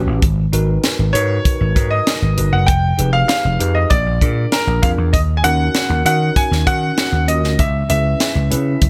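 A worn, slightly out-of-tune tine electric piano and a punchy, amped slap bass open this breezy, glossy slice of polished 1980s jazz-funk pop in a straight 4/4. The electric piano sits low in the mix as accompaniment, mellow and lightly overdriven with a lush chorus, as if heard through its built-in speakers, while the bass stays up front. At 0.2 seconds a tight, dry acoustic funk kit arrives with hi-hat, a high-tuned snare and a compact kick, its gated reverb giving the hits a clipped gloss. A clear, intimate baby grand takes the melody from 1.1 seconds, natural and close enough that its action noise is audible. The harmony moves from G#m7 through Fm7b5 and A#7 to D#m7 and C#m7, all within a small room ambience that keeps this brief fragment feeling snug and polished.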